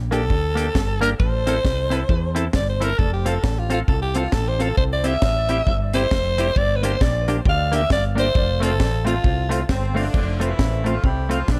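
Bouncy and cheerful, this short ska clip cut from a longer piece rides a swung eighth-note groove. A breathy, raspy alto saxophone takes the solo up front with punchy, scooped notes and vibrato, its gritty tone trailed by dub echo until about 9.7 seconds, when a mellow horn section takes over the melody from a distance, doubled in octaves with light vibrato and its own dub echo. Beneath it, a woody fretless electric bass sits round, dark and forward in the low register, while a deep reggae drum kit supplies a high-tuned snare, tight kick, hi-hat and crash with a dry, acoustic feel. A clean, compressed semi-hollow electric guitar plays fingered accompaniment, and a smooth tonewheel organ adds stabs in the background through a slow rotary speaker and dub echo. Light reverb and small-room ambience frame the whole, with the chords moving through G minor, A minor, F and C.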